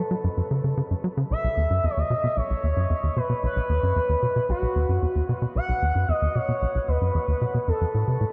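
Cosmic and mysterious, this short ambient excerpt in 4/4 sits in a vast, echoing space, its huge reverb trailing long behind the notes. A tight, punchy sequencer bass drives a dark sawtooth-and-square riff with a plucky filtered attack, colored by cassette tape and tape echo, while a smooth, expressive portamento lead sings a sustained melody with vibrato, subtle chorus and tape echo. The harmony rests on F#m before moving to B5 at 1.3 seconds and settling on F at 7.7 seconds.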